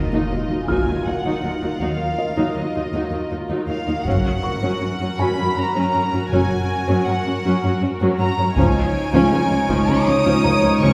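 This ominous, mysterious suspense cue opens on an electronic impact and a full-band accent, as two violin sections begin together: a clear, floating section carries the melody while a darker, woody section adds a lush second line with vibrato beneath it. Set in Eb minor at 80 BPM in a straight 3/4, the music moves from Ebmadd9 to Gb and then to Dbadd9. A close, intimate viola section with light vibrato and a soft attack plays the accompaniment, and a rich cello section holds the bass, both bowed sul tasto. A taiko ensemble struck with hard sticks sits in the background, joined by a felt-muted upright piano whose mellow texture carries audible action noise. A smooth-topped double bass section deepens the low end from 1.8 s, and at 8.6 s a further violin section adds a pure, high texture in the background, with the whole cue placed further back in a wet scoring-stage reverb.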